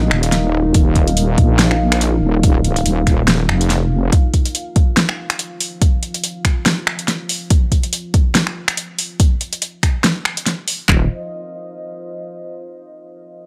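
A heavy, saturated wobble bass built from detuned sawtooth unison opens this cavernous, dark deep dubstep excerpt at 142 BPM, with a half-time feel and swung 16ths, then drops out at 4.1 seconds and returns at 10.9. Two layered electronic drum kits sit up front, one carrying kick drum and handclaps, the other a fat snare, finger snaps and metallic hats, both tape-warm in a small room ambience. Beneath them a moody pad holds slow-attack sustained chords with chorus and its own reverb, while the overall sound stays dry and gritty.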